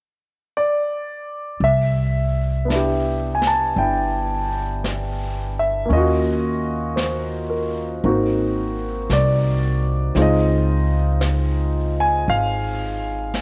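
A light studio reverb frames this tender, intimate jazz ballad at 56 BPM with a gentle swing, cut from a longer piece: a warm, present grand piano with long sustain opens alone at 0.6 seconds, then at 1.6 seconds a woody pizzicato upright bass up front and a dark, smooth brushed kit of snare and hi-hat sitting lower in the mix join it through Cmaj7, Ebm9, Ab7 and Dbmaj9 until 13.4 seconds.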